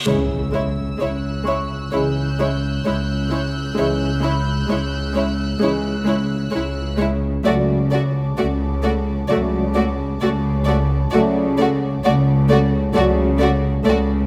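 An up-front double bass section holds a low C#2 beneath a dark cello section, both bowed sul tasto with a soft attack, anchoring this mysterious, tense suspense cue in a cinematic film-score style. At a slow 65 BPM in 4/4 and C# phrygian, a violin section carries a pure, high melody, a second violin line sits beneath it, and a faint, floating violin texture hovers above, while a chamber viola section with vibrato fills the middle. Mellow French horns and trombones hold sustained chords in the background as the harmony moves from C#m to D/C# at 7.5 seconds. An electronic reverse cymbal and impact opens the passage alongside a very quiet timpani struck with hard mallets, and a ringing, fingerpicked Celtic harp plays from 1.4 seconds until 7.5 seconds. Moderate scoring-stage reverb gives the ensemble a sense of space, and the passage is cut from a longer piece.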